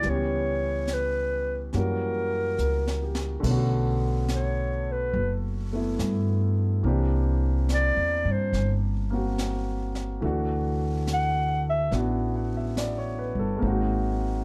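A breathy, subtoned clarinet carries the melody of this wistful, melancholic swung jazz ballad, its light vibrato and scooped notes turning into a solo at 3.4 seconds, just after a short drum fill, before it stops at 12.0 seconds. Underneath, an intimate grand piano with long sustain and audible action noise supplies the chords, while a woody pizzicato upright bass sits up front. A brushed drum kit with dark cymbals, a high-tuned snare and a boomy kick adds an airy studio-room feel. The whole sound is dark and lightly reverberant, and the passage is cut from a longer piece.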